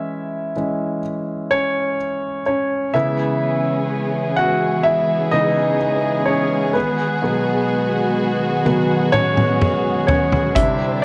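An up-front concert grand piano, intimate and full of deep bass with audible action noise and long sustain, opens this tender, emotional pop ballad fragment at 63 BPM on an E6 chord before moving to C#m7. A warm, close string section then enters at 3.0 s with bowed, soft-attack sustained chords, vibrato and a smooth top, and later a distant, roomy acoustic drum kit adds a brief fill of hi-hat, toms and punchy kick at 8.7 s, all bathed in a moderate plate reverb.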